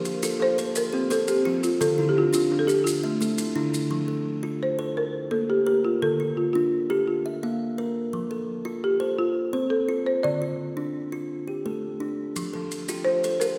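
A church or concert hall's lush reverb surrounds this short excerpt of southern African traditional music, a rippling mbira-style interlocking cycle in a straight 12/8. A bright, dry kalimba sits close and full at the front, its thumbnail-plucked arpeggios ringing through the whole passage, while a second kalimba adds a buzzing, boxy texture to the arpeggios in the opening before dropping out at 4.3 seconds and returning at 12.6 seconds. A folk marimba played with medium mallets enters at 0.4 seconds to carry the melody up front, its hardwood bars sounding woody and rustic. Grainy, mellow maracas shake softly behind them at the start and come back near the close. The harmony circles mainly between F and D minor, with passing B-flat colours that keep the warm cycle gently turning.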